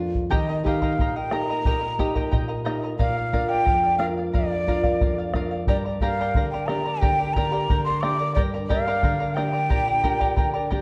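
A breathy, mellow cane quena carries the melody up front, its hollow tone colored by vibrato and soft attacks, in this melancholic, earthy Andean folk excerpt in G minor at 89 BPM in a straight 2/4. Beneath it, a bright fingerpicked nylon-string guitar sits close alongside a shimmering double-strung charango and a deep, dark bombo, moving through Eb, Bb and G minor chords. A recital hall's reverb and a dark production wrap the ensemble, and the passage is cut from a longer piece at 10.8 seconds.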